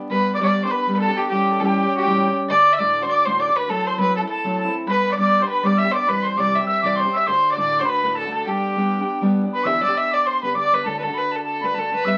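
Heard through the crackle of a very old 78 rpm record, with a moderate studio reverb around it, this lively, bright Celtic reel runs at 201 BPM in G major with a swung eighth-note feel, cut from a longer piece. A single bowed fiddle carries the melody up front, its tone rich and earthy. A metal whistle plays a second line high above, reedy and airy, with vibrato, tongued chiff and softened highs. A picked steel-string acoustic guitar sits up front in accompaniment with an auditorium-sized, warm body, while a very quiet bowl-back mandolin adds its double-strung picking as another second line until 9.3 seconds. The harmony moves from G through A7, D and F#m7b5 to C and back home, then turns toward Em7 and D as a new section begins at 9.7 seconds.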